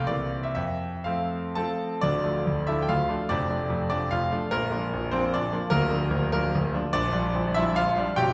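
Proud and rustic in spirit, this romantic classical piece is a triple-time dance in 3/4 with dotted rhythms, set in D minor and tuned slightly high to A4 = 441 Hz. A solo concert grand piano carries everything, its brilliant tone reaching from a deep bass Bb0 up to A5 and sitting present and up front. The tempo moves freely with rubato, ranging between 113 and 161 BPM. An opening passage built on C7 and F gives way at 2.0 seconds to a second section that settles on Dm, then moves through Bb and closes on Gm7/Bb near 6.9 seconds. A wet recital-hall reverb with a 1.4-second decay places the listener further back in the room, lending the short fragment, cut from a longer piece, a spacious concert setting.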